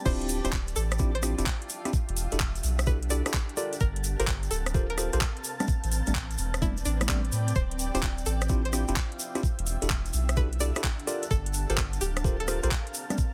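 Soulful and skippy, this two-step UK garage drop at 128 BPM in D minor swings its 16ths over minor-eleventh chords, with a worn, slightly out-of-tune electric piano firing dub-echoed stabs, a twangy, bright resonator pluck carrying the melody through chorus and echo, a blurred granular pad pumping underneath, a round sub bass with tube saturation sitting up front, a knocking kick and tape-warm garage kit of metallic hats, handclaps, rim clicks, crash and softly clipped snare in a small room, and a grainy tube shaker in the background, all pressed into a dense, heavily limited mix cut from a longer piece.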